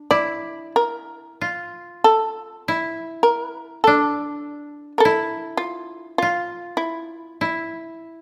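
A light reverb surrounds this brief recording of Japanese chamber music, cut from a longer piece, with both instruments sitting up front. The mood is still and solitary, moving at a slow 46-52 BPM in 4/4 with a rubato feel, drawn from the D hirajoshi scale. The fretless shamisen carries the melody between E4 and D5, its plectrum-plucked tone percussive and buzzing and louder than its partner. Beneath it, the koto plays a second line from D4 to F4, played with fingerpicks and sounding dry and woody. The koto sounds first at 0.0 seconds, the shamisen joins at 0.1 seconds, and the koto rings on alone after the shamisen stops at 7.9 seconds.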